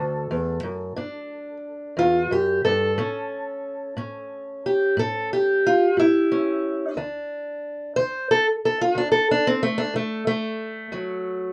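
In a straight, unhurried 12/8 lilt, this gritty, laid-back acoustic country blues excerpt features a lone, up-front fingerpicked steel-string parlour guitar, dark, woody and boxy with old strings, moving from D through G5 and A across its opening section before settling back on D as it steps into a solo passage at 7.0 seconds, all set in a short, wet booth ambience.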